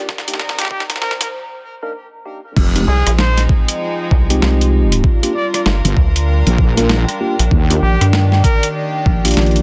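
Swaggering and gritty, this glitch hop excerpt at 97 BPM swings its 16ths in F dorian, opening with a build-up in which a drum fill, a break at 1.3 seconds, and filter sweeps on the mellow tine electric piano stabs and the distant, bowed string section chords set the stage beneath a warbling, lo-fi tape-like pad with chorus and ring modulation in the background. A clear trumpet with light vibrato carries a classical-style solo melody through digital delay from 0.6 seconds, while an overdriven, up-front boom bap sampler kit and a thumpy electronic kick bring small-room grit, and the strings, electric piano and pad pump against the sidechain. At the drop at 2.6 seconds, a heavy, saturated wobble bass takes over the low end, joined at 2.9 seconds by a rubbery, hollow square bass with a resonant filter pluck and moving notch, as the chords move from Fm7 through Gm7 to Ebmaj7.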